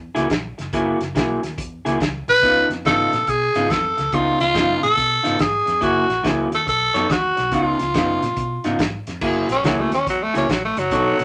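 A dark, round, foam-muted electric bass opens this gritty, swaggering electric blues shuffle, joined at once by a slightly broken-up guitar riff from a small old amp and a smooth soul drum kit with a punchy kick and dark cymbals, before a raspy, growling tenor saxophone enters up front at 2.3 seconds over F#9, C#9 and B9 chords and takes a solo from 9.2 seconds, all in a small, moderately reverberant room.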